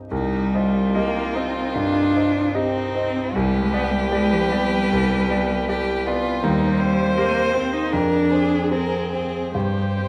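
A warm concert grand piano opens this melancholic, yearning slow romantic movement for piano quartet in C minor at 76 BPM, its intimate, up-front sound carrying audible action noise and deep bass, as a smooth, even violin sings the melody with vibrato, an up-front cello adds a second line, and a distant viola with portamento sits in the background, all in a freely rubato 4/4 through a wet recital hall with vinyl crackle, moving from Cm through Fm to a closing Gsus4 at 9.5 seconds in this fragment cut from a longer piece.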